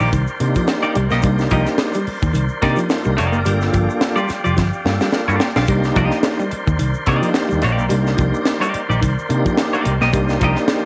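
Funk at 108 BPM in C dorian with a sly, cool mood and a light 16th-note swing, this short section cut from a longer piece rides a tight, dry drum kit with a high-tuned snare and a dark, round, foam-muted picked bass with tube saturation, both up front, while a grainy egg shaker sits in the background. Two semi-hollow electric guitars share the groove, one bright, clean and compressed with lush chorus playing accompaniment, the other dark and fingered on a low riff. A lightly overdriven tonewheel organ fires stabs through chorus vibrato and a slow rotary speaker alongside a clean, percussive organ holding sustained chords with key click, over Cm9 and Gm7 in a moderate echo-chamber reverb, and a drum fill and organ fill arrive together at 4.6 seconds before the groove repeats.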